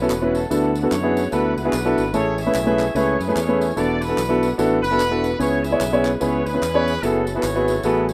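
A jubilant, uplifting uptempo gospel excerpt opens with a woody, up-front upright piano carrying the accompaniment, a distant, roomy horn section singing the melody with light vibrato, a growly, punchy fingered electric bass, and a very quiet, lightly overdriven tonewheel organ holding sustained chords through a rotary speaker. Group handclaps and tambourine join at 0.1 seconds, and the whole band swings its eighth notes through rich chords such as A69, Amaj7, E9sus4 and F#m11. The rough home demo mix sits in a moderate small-room reverb, with the polished piano standing out in front.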